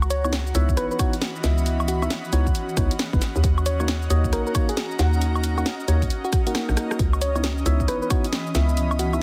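Heavily compressed with a radio-like, squeezed sound and a light digital ambience, this short cut from a longer piece is a soulful, bouncy slice of two-step UK garage with a swung shuffle. Up front, a hollow, knocking FM bass sits under a punchy layered electronic kick, while a house kit adds a cracking snare, warm hats, rim click, shaker and woodblock. The kick drops out from 6.5 to 7.0 seconds for a brief drum fill before it returns. Above the beat, a round, gentle, keys-like synth lead with chorus and vibrato carries the melody, and a mellow, clean tine electric piano plays stabs sent through dub echo. Behind them, a soft, breathy pad with chorus and sidechain pumping holds sustained chords in the background, joined by an evolving, blurred granular cloud pad with its own reverb that also pumps. The harmony moves from C#m9 to D#m7 at 3.2 seconds and back to C#m9.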